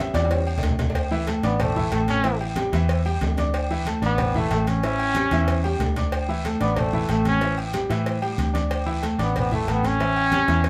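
A straight 4/4 salsa groove at 186 BPM drives this joyful, danceable excerpt, where a dark, round, foam-muted electric bass and a clear, intimate grand piano with audible action noise carry the A7 and Dsus2 harmony, thick-skinned congas sit in the background beside a tight, high-tuned cowbell, a raspy band-limited guiro and ringing, distant timbales and agogo bells with fills at 0.1 and 5.3 seconds, and a brilliant, punchy trombone with light vibrato enters at 1.5 seconds to lead up front in a moderate studio reverb.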